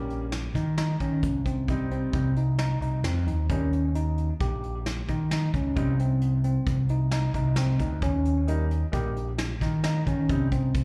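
An overdriven, round picked electric bass sits up front from the first moment, alongside a clear grand piano's accompaniment and a bright tine electric piano playing arpeggios through a delay, with a soft brush drum kit and punchy kick entering at 0.1 seconds. This driving, bright progressive instrumental moves in 5/4 at 132 BPM with a straight feel in Eb mixolydian, alternating between Eb and Cm chords. Captured live through a club's PA with light reverb and small room ambience, the piece is cut from a longer performance.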